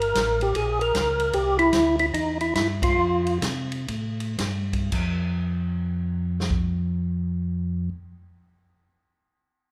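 A soul jazz organ trio opens all at once, with a percussive tonewheel organ carrying the melody over a mellow organ bass line and a vintage drum kit, in a soulful, swinging 4/4 in F major. The lead organ sounds fat and clicky, its third harmonic percussion and chorus vibrato turning through a slow rotary speaker, while the bass organ stays round and dark beneath it, also spinning gently through its own slow rotary. The acoustic kit brings a punchy kick, a medium-tuned snare, hi-hat, ride and crash with a natural studio character. Moving from Gm through Cadd9 to Fadd9, the tempo slows from 1.3 s, with a band accent landing at 2.8 s, and the melody stops at 3.4 s. The harmony falls away at 4.9 s, the drums drop out at 6.6 s, and the bass organ carries on until 7.9 s in a moderate recital hall reverb that gives this fragment of a longer piece a churchlike air.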